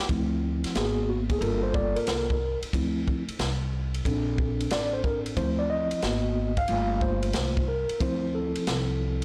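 A mellow tine electric piano, clean and up front through its built-in speakers, leads this cool, mellow jazz-hop cut at 91 BPM in D minor, carrying the solo across the whole 9-second excerpt over a swung sixteenth-note feel and a looping progression of Dm9, G#m7, Gm7 and Bbmaj9. Beneath it, a woody, thumpy pizzicato upright bass on gut strings sits low with transformer saturation, while an open acoustic jazz kit in a small room adds a boomy kick, medium-tuned snare, hi-hat and dark ride cymbal up front. Light studio reverb surrounds the mix, and the overall recording is blown-out and overdriven, giving the playing a gritty, saturated edge.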